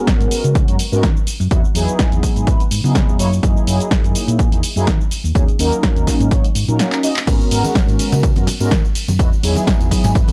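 Filtered disco house at 125 BPM in G# minor, with a lightly swung sixteenth-note groove and a groovy, sensual mood, cut from a longer piece. A mellow synth brass carries the accompaniment with a brassy, detuned sawtooth tone, a filter sweep and vibrato, treated with chorus, phaser and sidechain pumping over rich chords moving from G#m11 through Emaj9, F#13 and D#m7. Up front, a punchy, tape-warm electronic kick anchors the beat, joined by an analog drum machine playing snare, handclaps, hi-hat, ride, crash and cabasa, its hats, cymbals and percussion pumping against the kick. A dark, round hollow-body electric bass, fingered and amped, pumps beneath it all. The kick drops out from 6.8 to 7.3 seconds for a drum fill, and at 7.3 seconds bright, close tambourine and congas enter in the background as the chords return to G#m11. The whole mix has a dry, gritty hardware character with transformer saturation and a digital ambience.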